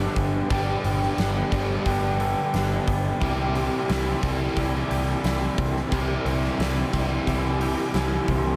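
The raw garage guitar stands up front, its lo-fi, overdriven riff trailed by a reverse reverb, while a crunchy overdriven guitar plays a riff through a lush chorus. This short cut from a longer shoegaze and dream pop rock piece moves at 89 BPM in a straight 4/4, with a dreamy, hazy mood. In the background, a twangy electric guitar plays clean, fingered arpeggios, compressed and spread by ensemble chorus and a diffuse ambient delay. A vintage picked bass, foam-muted, dark and round, holds the low end, and a huge arena drum kit with a punchy kick, medium-tuned snare and hi-hat plays from 0.2 to 8.4 s in a pumping hall room. The harmony moves from Gadd9 to C at 3.2 s, and a wet plate reverb soaks the whole mix.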